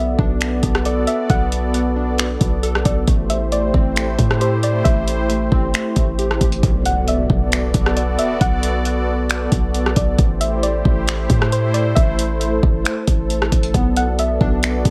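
A half-time groove in 4/4 comes from a deep house drum kit that enters at 0.2 seconds: finger snaps, hi-hat, rim click and a deep kick, layered and tape-toned, placed up front. This hazy, ethereal slice of atmospheric cloud-rap hip hop is cut from a longer piece, with chords moving between Bm7 and Am7. Beneath the beat, a boomy, sine-based 808-style bass also sits up front. A sweeping resonant pad of detuned sawtooth waves holds sustained chords with a slow attack, long release, chorus, tremolo and sidechain pumping. A soft, round pluck carries the melody in a dark tone with chorus and digital delay, joined by glassy digital keys playing wave-folded arpeggios with chorus and delay until 6.6 seconds, when a background electronic impact marks a new section. The keys return at 13.7 seconds, and light reverb surrounds the mix.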